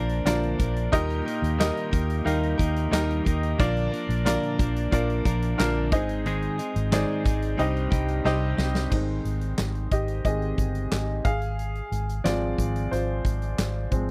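A dry, close 1970s-style studio sound frames this bittersweet, driving piano-driven pop excerpt at 90 BPM in a straight 4/4, moving through Bb, Eb, Ab and Cm before settling on Ab and Fm/Ab. A woody, slightly detuned upright piano with long sustain carries the accompaniment over a dark, foam-muted fingered electric bass and a huge arena drum kit with a punchy kick, medium-tuned snare, hi-hat, crash cymbal and handclaps, while a picked, compressed clean electric guitar, recorded direct, plays a riff until 8.9 seconds. After a drum fill at 8.3 seconds, the piano takes a solo from 8.9 seconds to the end.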